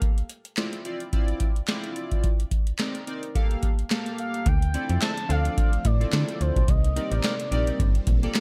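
A dry, up-front mix opens this slick, funky slice of early-eighties boogie funk at 108 BPM in D phrygian, with a booming analog drum machine of deep kick, crisp snare, metallic hats and handclaps under gated reverb, swinging on the sixteenths beneath a glossy, chorused polysynth moving through Dm9, Cm9 and Gm9. At 4.2 seconds a mellow, expressive synth lead with vibrato takes the melody, and from 4.5 seconds a snappy, digital FM bass joins up front while a lush string machine holds vintage-sounding chords in the background. A smooth-topped, jazz-style horn section adds a second line from 5.0 seconds in this short piece cut from a longer track.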